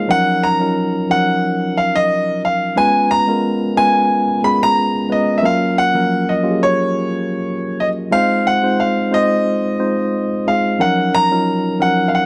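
Set at 90 BPM in 4/4, this soul fragment rides a gentle swing on the sixteenth notes, giving its unhurried pulse a relaxed, slightly lilting feel. Cut from a longer piece and lasting about 12.3 seconds, it sits in Eb dorian with a bittersweet, smooth mood, moving through Ebm9, Db7, Gbmaj7 and Fm7 before settling back on Ebm9. A clear, intimate grand piano carries the melody high in its register, sounding natural and up front, with the soft mechanical noise of its action audible beneath the notes. Supporting it throughout, a mellow tine electric piano plays the accompaniment in the middle range, its clean tone coming through its built-in speakers and also placed close to the listener. Light reverb and a small room ambience wrap the pair in a snug, close-up space that suits the bittersweet character of the harmony.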